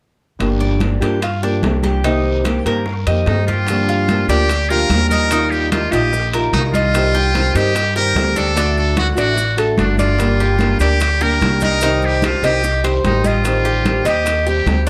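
Close, detailed microphones and light reverb frame this danceable Cuban son and guajira excerpt in G minor at 147 BPM, where a thumpy, gut-strung upright bass sits up front beneath a boxy, dark fingerpicked ladder-braced acoustic guitar, and a metallic Cuban tres with double strings adds picked arpeggios from 0.6 seconds. At 3.3 seconds a buzzy, brilliant trumpet with a metal mute takes a forceful, jazz-style solo melody with light vibrato and slapback echo, and grainy maracas join at 3.7 seconds as the progression moves through Ebadd9, Cm, D and Am7b5. Bright congas and ringing metal-shell timbales stay in the background, while round, low-tuned bongos and a raspy guiro sound distant and very quiet.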